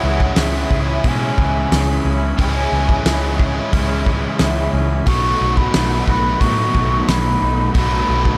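A light, small-room reverb gives this short excerpt of shoegaze-tinged dream pop rock an intimate, blissful haze at a relaxed 90 BPM in straight 4/4. A mellow, hollow concert flute carries the melody with vibrato, a soft attack and slapback echo, floating above a brassy, detuned analog pad that holds sustained chords with chorus in the background. Two overdriven guitars drive the riffs: one biting and dark with a subtle chorus, the other raw and garage-like, sitting further back and trailed by reverse reverb. A very quiet, twangy clean electric guitar picks arpeggios underneath, while a round, foam-muted picked bass anchors the low end. A loose indie drum kit enters at 0.2 seconds with a punchy kick, fat snare and hi-hat in a pumping room sound, as the harmony moves from C#m7 to B7 at 5.1 seconds.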